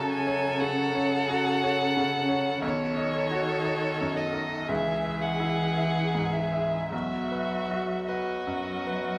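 A smooth, vibrato-rich violin carries the melody up front in this tender, slow romantic movement for piano quartet, unfolding in 4/4 at 51-60 BPM with a rubato feel. Beneath it, a second violin with a focused tone and a cello shaded by portamento shape expressive inner lines, while a brilliant grand piano, intimate enough that its action noise is audible, supplies long-sustained accompaniment through F#m, B9, C#m and B. A wet recital hall reverb surrounds this brief 9.2-second passage, cut from a longer work.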